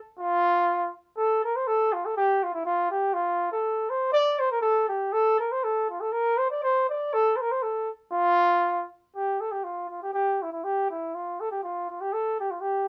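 A bucket-muted trumpet enters alone at 0.2 s with a dark, veiled tone and light vibrato, playing a rollicking, bright Celtic folk tune in a lilting swung duple metre and classical style, captured close and detailed in a small, moderately reverberant room before moving into a new section at 9.1 s and running until this short cut from a longer piece ends at 12.9 s.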